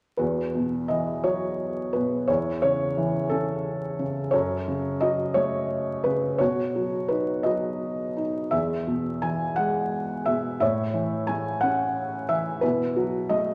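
A vinyl crackle sits beneath a wet recital-hall reverb, giving this short excerpt from a longer piece a soft, aged glow. Within that space, a felt-muted upright piano plays alone from 0.2 to 13.5 seconds, its tone mellow and intimate yet placed up front, close to the listener. This is lyrical classical solo piano in 6/8, shaped with a free rubato feel that lets the phrases breathe. The harmony drifts through open, airy chords such as Esus2, F#m and Eadd9 before settling on an unresolved B7sus4 at 12.6 seconds. The mood is peaceful and tender throughout, like a quiet private reverie.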